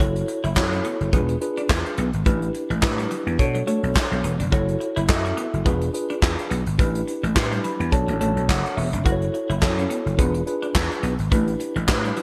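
Slick and late-night, this early-eighties boogie funk cut rides a swung groove: a bright, growly slap bass and a soft brush kit with tight kick and handclaps sit up front, while a mellow tine electric piano comps through a looping F#m7–E7b9–A9sus4–Bm9 progression and takes a short fill at 7.4 seconds, and a dark, clean picked guitar riff with subtle chorus hangs in the background under light reverb.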